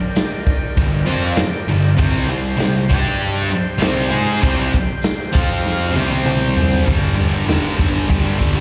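A buzzy, lightly vibrato combo organ with lush chorus opens this menacing, swaggering garage rock piece, soon joined by a punchy, up-front raw drum kit and a distant, jingly tambourine, before a thick, double-tracked fuzz guitar riff with slapback echo and a growly, overdriven bass arrive at 0.8 s, with a drum fill from 5.7 s to 6.9 s, the whole sounding like a live club gig heard through the venue's PA and captured on cassette tape.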